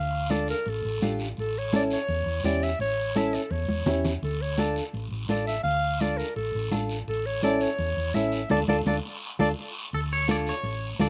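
A straight, driving 4/4 cumbia at 168 BPM in D harmonic minor, this fiery excerpt opens with a breathy, jazz-style clarinet soloing up front with light vibrato over a dark, round hollow-body electric bass, fingerpicked flamenco guitar with audible finger squeak and slapback echo, bright thin-skinned damped congas, and a raspy, vintage guiro, all captured in a dry outdoor recording as the band hits an accent before a clean, twangy electric guitar with spring reverb and slapback echo takes the melody at 9.9 seconds.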